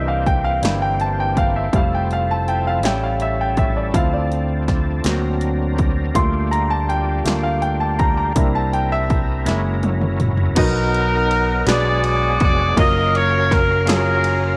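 A dry mix opens this jubilant, soulful slow gospel cut from a longer piece, rolling in 6/8 at 54 BPM in dotted quarters, tuned to A4 = 438 Hz. A polished, present concert grand piano takes a solo over gritty, overdriven tonewheel organ chords with chorus vibrato and a slow rotary speaker, a round, amped fingered electric bass, and a punchy, tape-warm analog drum machine re-recorded in a large room. The chords move from C7 through Fmaj7 and D7b13, and a drum fill at 9.5 seconds leads into the horn section's entry at 10.6 seconds, where it carries the melody with light vibrato over Bmaj7, Bm6 and F#maj7.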